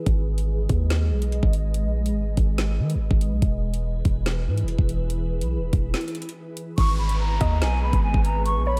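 Half-time 4/4 drill beats at 143 BPM drive this tense, ominous hip hop excerpt in G# minor, where an up-front electronic kit of knocking kick, woody snare, metallic hi-hats and crash sits beside a punchy, heavy 808-style bass under a glassy FM pad with chorus, reverb and phaser moving from G#m to E, until after a break at 5.9 s an airy, hollow concert flute with vibrato and tape echo enters with a downlifter at 6.8 s, joined at 7.4 s by a warbling, lo-fi detuned sawtooth pluck second line with chorus and echo, all in a lightly reverberant room.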